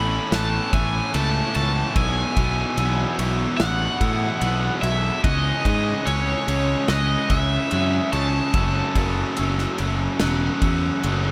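A light, small-room reverb gives this soaring, euphoric post-rock excerpt a close space, with a growly fuzz bass sitting up front. At 73 BPM in a straight 4/4, an overdriven cranked stack guitar carries the melody high in its register, its picked lines trailed by tape echo. Beneath it, two bright, scooped distorted electric guitars play riffs in the background, while a glassy FM pad holds very quiet, ethereal sustained chords with slow attack and ensemble chorus. A glockenspiel struck with soft plastic mallets adds mellow, bell-like arpeggios, also trailed by tape echo. The loose acoustic drum kit, with a tight kick, medium-tuned snare and ride cymbal, enters at 0.3 seconds and pumps in its small room, as the harmony moves from Aadd9 through Esus2/B and C#madd9 to F#m7.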